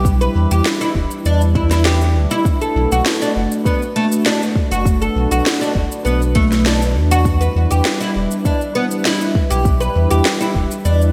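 A woody, fretless oud plays plucked arpeggios up front through a digital delay, setting a mystical, meditative tone in this organic downtempo piece cut from a longer work. Beneath it, a round sine sub bass and a deep electronic kick sit low, while an electronic cabasa and sharp snare carry gated reverb, and a smooth, detuned analog pad holds sustained Em7 and Bm7 chords with chorus, 12-bit sampler grit and sidechain pumping. A lush hall reverb and bright 1980s-style digital production frame the piece.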